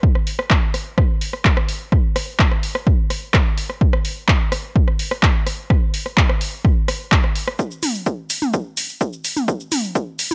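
Techno at 127 BPM in a straight 4/4, this short cut from a longer piece carries a hypnotic, dramatic mood built entirely from percussion. An electronic kick drum opens at 0.0 seconds, punchy, layered and overdriven, sitting up front with a high-pass filter shaping its tone. A deep house drum kit joins at 0.2 seconds, bringing handclaps, hi-hat, rim click, shaker and toms, also overdriven and up front, with low-pass filtering on the hats, snare, percussion and toms and sidechain pumping on the hats, percussion and toms. The sound is dry and gritty, set in a digital ambience that gives it a hard-edged, hardware character. From 7.6 seconds the track moves into a new section that works as a build-up, with the kick running until 10.1 seconds and the kit carrying on until the cut ends at 10.3 seconds.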